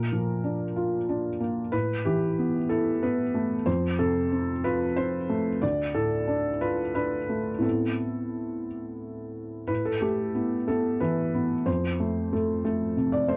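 A neoclassical minimalist piano piece in A minor, this short excerpt cut from a longer work carries a wistful, reflective mood at 60 BPM in 6/8, its beats uneven and pulled by rubato. A single felt-muted upright piano plays alone for the full 13.4 seconds, ranging from D2 up to D5. Its tone is soft, mellow and intimate, with a boxy, thin-felt character, and the audible action noise keeps the instrument close and up front. The harmony drifts from Bb through Asus2, F, Dm and Amadd9 before the opening phrase returns at 9.7 seconds, moving again through Asus2 and F. Light reverb and a dark production wrap the piano in a hushed, private atmosphere.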